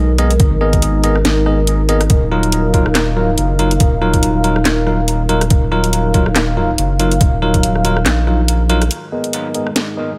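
This brooding, cavernous deep dubstep excerpt opens on a dark, detuned analog pad with a chorus effect, holding slow-attack sawtooth chords over a thick, saturated sub bass that sits up front, moving from G#madd9 to D#madd9 at 2.1 seconds in G# dorian. At 141 BPM in a swung half-time feel, a garage drum kit of handclaps, hi-hat, rim click and a cracking, tape-tinged snare joins almost at once, alongside a bell-like tine electric piano playing bright, clean stabs through a low-pass filter and dub echo. A compressed, pitched-down electronic kick, overdriven and muffled as if re-recorded in a small room, thumps beneath from 0.4 seconds until 7.6 seconds. The sub bass drops out at 8.9 seconds after a band accent, and the harmony returns to G#madd9. In the final moments a very quiet, reversed granular texture swells in on G#4, dreamy and bright, all set in a digital ambience that deepens the cavernous mood.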